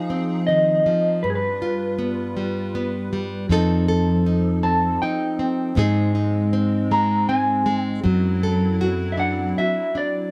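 A softly reverberant, intimate sound opens this melancholic acoustic folk-pop ballad in 3/4 at 79 BPM, cut from a longer piece. A dark, clean electric guitar with tremolo carries the melody over a bright, fingerpicked nylon-string guitar whose finger squeaks are audible, while a hollow, flute-like pad with ensemble chorus holds sustained chords beneath. A round fretless electric bass enters at 3.5 seconds and drops out at 9.5 seconds, as the chords move from Fm7 through G7, F7 and Ab to D7/F#.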